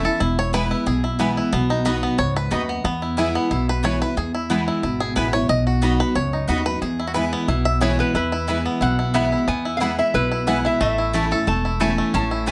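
Bluegrass, joyful and virtuosic, in a short cut from a longer tune: a twangy, up-front five-string banjo, played with fingerpicks, solos over full-bodied dreadnought guitar picking and a woody, thumpy pizzicato upright bass on gut strings, while a round, double-strung mandolin adds stabs with slapback echo from 0.5 seconds, and a metallic, nasal lap resonator guitar joins on slide melody at 7.8 seconds, all in a moderate studio room.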